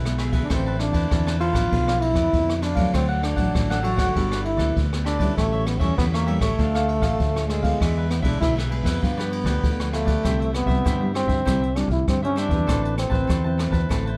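A straight 4/4 samba-choro groove at 98 BPM rides on a roomy brush kit with dark cymbals, a boomy kick, hi-hat and rim clicks, anchored by a round, fingered electric bass. A crisp, bright picked cavaquinho and a thumb-plucked classical nylon-string guitar, set in the background with audible finger squeak, fill out the harmony. Entering at 0.4 s, an up-front solo trombone sings a yearning, nostalgic jazz line with vibrato and plate reverb, and the passage settles into C major at 10.2 s within this dark, warm production.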